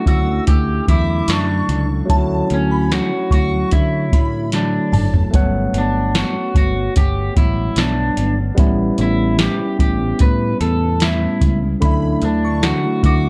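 Nostalgic and laid-back, this bedroom pop excerpt sets a twangy, slightly broken-up electric guitar melody with subtle chorus and analog delay over a barky, lightly overdriven tine electric piano with cassette-tape grit, a mellow background guitar in lush chorus and vibrato, a round, punchy picked bass and an up-front soft vintage rhythm box with deep kick and metallic hats that plays a fill from 4.5 to 5.3 seconds, while a dreamy, detuned FM bell with ensemble chorus shimmers high above until 5.1 seconds before returning at 11.8 seconds, all in a dark production with light reverb.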